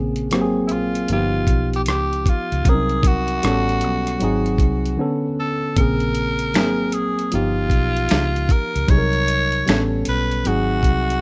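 A swung sixteenth-note groove in 4/4 drives this short neo-soul and R&B fragment, taken from a longer piece. It rests on a dusty sampler-style drum kit of finger snaps, hi-hat, rim click, a thumpy kick and a medium-tuned snare, compressed and gritty and re-recorded in a small room. Underneath, a vintage fingered electric bass sits dark and round, its foam-muted tone coming through an amp. A worn, clean tine electric piano, slightly out of tune and played through a combo amp, carries the chords up front through ninths, augmented sevenths and half-diminished colours. A short break falls between 5.0 and 5.8 seconds. From 0.7 seconds a raspy tenor saxophone plays the solo melody in a pop style, edgy and punchy with a light vibrato. The mood is sultry and introspective, and the dry, rough home-demo mix keeps the sound intimate and unpolished.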